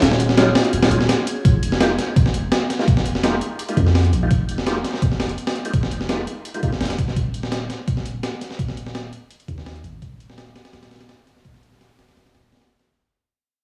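A straight 4/4 breakbeat drives this raw, atmospheric drum and bass and jungle cut at 168 BPM in F phrygian, with a compressed, gritty sampler-style kit placed up front: a thumpy kick, a high-tuned snare and hi-hat, coloured by small room ambience and cassette tape. Beneath it, a deep, sine-based 808-style bass holds long decaying notes from Eb1 to F2, fast in attack and mellow in tone, until 12.5 seconds. The opening drop over Ebm11 briefly carries a warbling, nostalgic tape-like pad of detuned sawtooth and triangle chords, very quiet and vintage, lasting until about 1.4 seconds, alongside a faint reversed, dreamy granular texture high on Ab6 that lingers until about 1.5 seconds. From 0.4 seconds a bright, reedy tonewheel organ stabs between Gb3 and G4, its key click and chorus vibrato turning through a slow rotary speaker, with cassette grit and dub echo, before it stops at 6.7 seconds. 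The harmony moves to Fm11 as the longer second section begins and fades out, and the chords drop away after 7.2 seconds. The whole piece sits in a lo-fi home cassette sound with vinyl crackle and moderate spring reverb.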